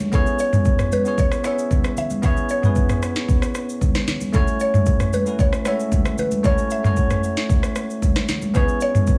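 An overdriven, electronic drum kit with a soft kick, sharp snare, rim click, shaker and toms anchors this deep, late-night amapiano excerpt at 114 BPM in 4/4. It sits up front beside a bright, clean, bell-like tine electric piano, while thick-skinned, vintage-toned congas stay in the background, and a faint downlifter and riser surface at the very start and again from 8.5 seconds. From 0.1 seconds a woody, round, mallet-like synth pluck carries the melody with chorus, phaser and tape echo over C#m7 and F#m7 chords, all in a dry, small room.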